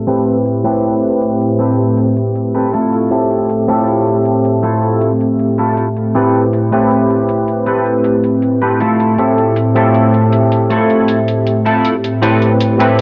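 Nostalgic and melancholic, this straight 4/4 vaporwave fragment drifts between Am9 and Fmaj7/A, built on a barky tine electric piano, clean and up front, colored with analog chorus, 12-bit sampler grit and tape echo, over a warbling, dark square-and-triangle pad that swells in slowly and sustains its chords in chorus and reverb. From 0.1 seconds a bright, picked semi-hollow electric guitar plays a riff in ensemble chorus with sampler grit and tape echo, while a faint electronic hi-hat ticks beneath. Filter sweeps run across the pad and guitar throughout, and the whole piece sits in a dry, gritty cassette-tape sound with a low-pass haze and light digital ambience.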